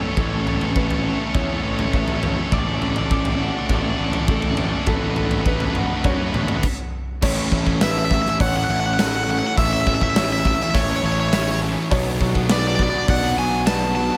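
Hopeful and euphoric, this post-rock excerpt at 102 BPM in A major builds from the start as a muffled, tape-echoed felt-muted upright piano and a faint, twangy twelve-string electric guitar spin arpeggios beneath a background fuzz guitar riff, a tight distorted guitar riff that falls away at 6.6 s, a growly fuzz picked electric bass and a punchy, up-front big rock drum kit with bright cymbals, and after a brief stop the band moves into a new section where a hollow-bodied overdriven semi-hollow guitar carries the melody with tape echo from 7.8 s, set in a lightly reverberant room.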